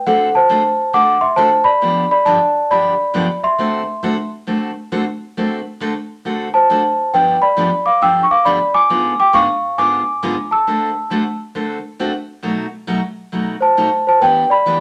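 Country in D mixolydian at 136 BPM with a swung eighth-note feel, this down-home, playful excerpt sets a bell-like, sweet celesta melody up front, its hard felt hammers shaping a delicate tone. A bright, full-bodied picked dreadnought acoustic guitar supplies accompaniment from 0.1 seconds, sitting lower in the mix beneath the lead. Moderate studio reverb frames the pair as the chords move from D7 and G9 through G#dim7 and B7b9 before ending on Em7 at 14.2 seconds.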